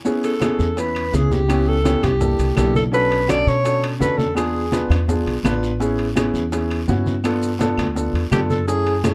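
A straight 4/4 groove at 167 BPM drives this short, fiery Afro-Cuban jazz passage in A major, cut from a longer piece and carrying a sophisticated edge through chords such as Amaj9, C13, E7b9 and G9. Low-tuned congas with a thick skin, ringing metal-shell timbales, woody claves, a raspy guiro and grainy maracas sit in the background, while round, hard-hand bongos are very quiet. Up front, a pizzicato upright bass with steel strings gives a dark low end, and a concert grand piano accompanies with deep bass, long sustain and audible action noise. A breathy alto saxophone carries the melody in an intimate, whispered subtone with a soft attack and plate reverb, dropping out at 4.9 seconds and returning at 8.3 seconds. The production is dark, warm and lightly reverberant.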